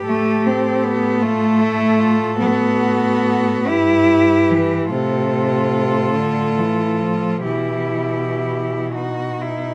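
Moderate studio reverb frames this solemn, yearning passage from a longer classical piece for cello ensemble, unfolding in a rubato 6/8 at about 38-53 BPM in dotted quarters, as a close, smooth, evenly bowed cello sings the melody with vibrato above a second cello line of the same character, an intense, up-front cello carries the accompaniment, and a distant, expressive bass cello adds portamento beneath.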